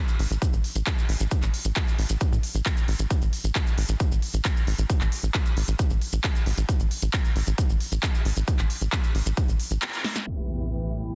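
A punchy, layered electronic kick sits up front in this euphoric, emotional burst of uplifting trance, cut from a longer piece and set in a straight 4/4 feel. Around it, a big-room dance kit adds snare, crisp hi-hats and handclaps with a tape-warm tone re-recorded in a large room, while grainy, close-miked maracas sit quietly in the background. A tight, driving sequencer bass of sawtooth and square waves plucks through a filter with a fast, decaying attack, its mellow tone thickened by tube saturation and sidechain pumping. After a band accent at 9.8 seconds and a drum fill, an electronic impact lands at 10.3 seconds as a lush, thick, airy unison pad enters with chorus and a soft attack, and a huge, detuned, bright supersaw lead sounds faintly behind it, both pumping with the sidechain. The mix is dry and dense, sealed by a heavily limited modern master.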